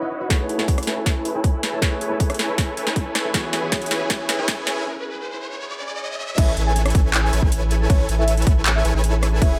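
A euphoric, bright future bass excerpt at 158 BPM in a half-time feel, where huge, lush detuned supersaw chords and mellow, ringing harp arpeggios open the piece and fall under a filter sweep from 0.3 seconds, when they are joined by a warm grand piano with deep bass, a hard-clipped overdriven kick and an up-front trap kit with sharp snare, metallic hats, handclaps, rim clicks and crash cymbals. A drum fill and an electronic riser drive the build-up over Amaj9 and E6 chords before a brief break, and at 6.4 seconds the drop lands with a thick, saturated sub bass and a soft, round octave-layered synth lead carrying the melody in the background, coloured by chorus, tremolo, vibrato and a cassette tone. Sidechain pumping breathes through the supersaws, harp, piano, lead and sub bass, while tape echo trails the harp, supersaws and piano, all set in light digital ambience.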